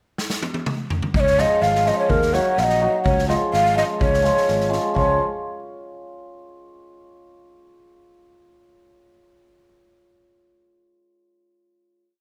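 A street-band drum kit opens this short, wild Balkan wedding-band piece with a fill across the pickup bar from 0.2 seconds, its boomy kick, medium-tuned snare and toms sounding airy and polished in a big room. At 1.1 seconds the fretless electric bass comes in with punchy, amped root-and-fifth notes on the main beats. A breathy, hollow ney soon takes the melody up front, its end-blown reed-cane tone straight and crisp-attacked as it spins a motif-based line in sentence-like phrases. Close behind, a hammered dulcimer adds shimmering, ringing off-beat triad chords that keep the brisk two-beat feel churning under the virtuosic lead. The music moves through a single section over a simple major, minor and back progression in light reverb before settling on a final chord at 5.0 seconds.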